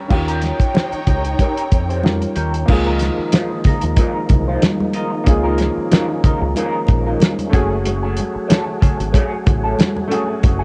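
Lush 1970s-style soul cut from a longer piece, with a thuddy cloth-damped drum kit up front carrying cassette-tape color, a round, punchy fingered bass, an intimate baby grand piano with audible action noise, a slightly broken-up wah guitar riff through a small old amp with spring reverb, bright close congas in the background, and dark, woody bowed strings that give way at 2.7 seconds to a gritty, overdriven tonewheel organ holding sustained chords through a slow rotary speaker, captured dry as a warm home cassette recording with a faint mains hum.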